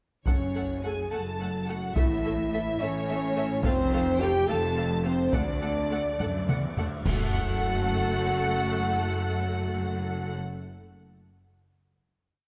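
Dark and relentless, this short, complete cinematic piece is an epic orchestral film score in F# minor, moving in a slow 6/8 at 71 BPM over a F#m, A, F and D progression before settling on a closing F#m chord at 7.1 s. A warm violin section carries the melody with vibrato and repeated notes, while a clear, close second violin section doubles the tune at the octave and a bright, intense viola section fills in with repeated notes and sustained chords. A present French horn section, played in a classical style with light vibrato, sits prominently in the mix with sustained harmony. Beneath them, a rich cello section places bass notes on the beats and answers at phrase ends, doubled by a smooth, distant double bass section. Heavy-stick taiko strokes drive the piece from the opening until 8.1 s, with a drum fill leading into a full-band accent. Bright cymbal swells and crashes, along with concert bass drum strokes, join at 3.6 s, and the whole sits in a moderate scoring-stage reverb that gives the strings a lush depth.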